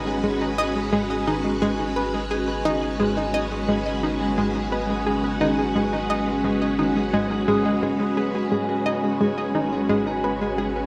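A lush, up-front string machine ensemble holds sustained chords throughout this expansive, hypnotic slice of ambient, sequencer-driven space music, its ensemble chorus lending a vintage sheen. A bright analog pluck with chorus and tape echo repeats a riff, while a ringing, fingerpicked Celtic harp plays arpeggios softened by a low-pass filter and tape echo, and a deep, dark round analog bass sustains a single low note underneath. The mix is bathed in a wet spring reverb and heavy echo.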